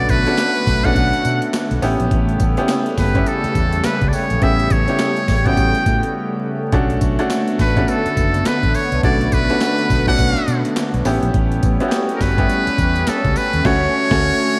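A buzzy, breathy trumpet with a metal mute carries the melody up front in a flirty, bouncy new jack swing groove, backed by a bright grand piano with audible action noise, a lush detuned sawtooth pad with chorus, and a dark, round, foam-muted fingered electric bass. A gritty, compressed breakbeat kit with a thumpy kick, handclaps, tambourine and hi-hat swings the sixteenths, pausing for a short break at 6.1 seconds before the band hits a closing accent at 13.6 seconds. The whole mix sits in a concert hall reverb with a big arena sound and a layer of vinyl crackle, in a fragment cut from a longer piece.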